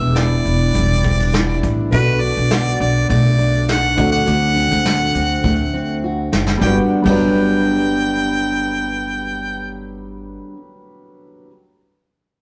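A clear, up-front harmonica sings a carefree, heartfelt acoustic pop melody with light vibrato and scooped notes over a full-bodied fingerpicked dreadnought guitar with audible finger squeak, a woody, thumpy pizzicato upright bass on gut strings and a dark, mellow upright piano in the background, while a soft brush kit with dark cymbals and a punchy kick enters at 0.2 s and plays a fill from 5.4 to 6.6 s at a straight 102 BPM in G major, the chords moving from Em7 to Gmaj7, captured in a rough rehearsal room with stone reverb and tube saturation.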